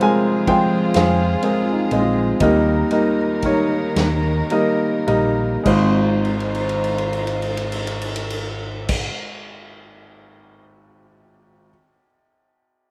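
In a slow, straight 6/8 at 34-43 BPM that slows over the first 5.7 seconds, this heartfelt, hopeful acoustic folk-pop ballad in Ab major moves from F minor to an Ab6 chord, with a natural country drum kit sounding distant and roomy with its tight kick and rolled-off top, and a drum fill from 6.2 seconds. A warm, up-front grand piano carries the melody with a slapback echo, over round, punchy fingered electric bass that enters at 1.0 seconds, soft sul tasto chamber strings holding sustained chords with light vibrato, and a very quiet felt-muted upright piano playing boxy, intimate arpeggios with audible action noise. The sound is close and fairly dry, and this short section is cut from a longer piece.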